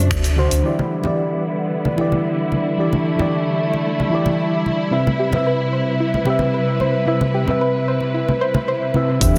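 A mellow FM electric piano and a dark, woody string section open this relaxed sunset chillout passage together, with a round sub bass and a brief accent at 0.1 seconds from an overdriven deep house drum kit and a deep, layered electronic kick. That opening burst of bass and drums falls away almost at once, leaving soft-handed congas, bright and close, to carry the groove under the sustained harmony of the keys and bowed strings. The electric piano sounds vintage and warbling, with chorus, tremolo and tape echo, while the lush strings, up front with vibrato, move through a filter sweep across the main stretch of the piece. At 4.9 seconds a gentle, rounded pluck enters with chorused, echoing arpeggios as the chords shift from Em7 to Cmaj7. The sub bass, kit and kick return briefly at 9.2 seconds, all inside a lush hall reverb and a dense, heavily limited modern master.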